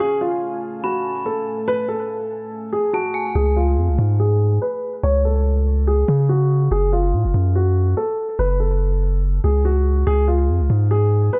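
Hip hop in F# harmonic minor at 143 BPM with a half-time feel, this short excerpt cut from a longer piece feels cold and tense. A dark, mellow concert grand piano carries the melody throughout, its short-sustain notes softened by a low-pass filter and trailed by analog delay, with a filter sweep running across it from 3.4 to 10.1 seconds. Underneath the opening, a deep, moody ambient pad holds detuned sustained chords with chorus and its own reverb, while a metallic, inharmonic FM bell rings a bright second line from 0.8 seconds, colored by chorus, phaser and delay; both drop out around 3.3 seconds. At 3.4 seconds a long, sine-toned 808-style bass arrives up front, its fast attack decaying into deep sustained notes beneath the piano. The chords move from F#madd9 to C#5, then F#m and C#, and the echo-heavy mix with light reverb keeps the space shadowy and restless.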